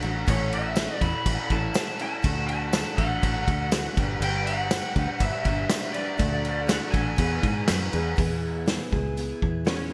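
Nostalgic and jangly, this short cut from a longer folk rock and heartland rock piece moves at 121 BPM in a straight 4/4, its chords cycling through A, D, G, D and E. Up front, a vintage acoustic drum kit delivers a punchy kick, a medium-tuned snare and dark cymbals, with gated reverb and a pumping small-room character. Beneath it sits a round, foam-muted fingered electric bass. A picked steel-string acoustic guitar with subtle chorus rings bright in the background with audible finger squeak, while a soft, flute-like tonewheel organ holds very quiet sustained chords through a slow rotary speaker until 8.2 seconds. From 0.3 seconds a lead guitar through a small cranked amp carries the melody, overdriven and lo-fi with delay, and a close, dry tambourine adds jingle from 0.8 seconds. Light reverb and small room ambience frame the bright 1980s-style digital production.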